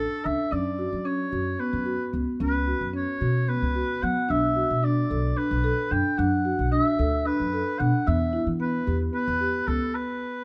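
Hypnotic and restless, this contemporary chamber piece moves in 7/8 at 223 eighth-note beats per minute in B minor, with the harmony shifting from D5 through F#sus4 and Bm7 to Em. A classical-style oboe carries the melody with light vibrato, over mellow, round marimba arpeggios played with soft mallets and a woody pizzicato upright bass sitting up front. Close, detailed microphones and light reverb frame the trio; the bass stops at 9.8 seconds and the marimba at 9.9, leaving the oboe alone until the cut at 10.4 seconds.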